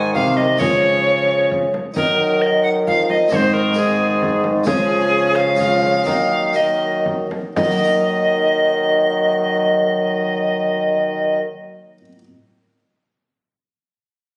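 A courtly, solemn Renaissance-style consort dance in 3/4 around 117-134 BPM in E-flat dorian, cut from a longer piece, where an airy, wooden alto recorder with vibrato and a soft attack carries the melody up front over a warm bassoon bass, a clear but distant trombone, a dry, brilliant close-miked harpsichord with plucked octave strings that rings on alone until 12.2 seconds, and a deep frame drum under soft hands that drops out at 7.8 seconds, the pace slowing between 4.0 and 7.6 seconds as chords cycle through Ab, Db and Ebm in a moderate recital hall reverb captured on a phone.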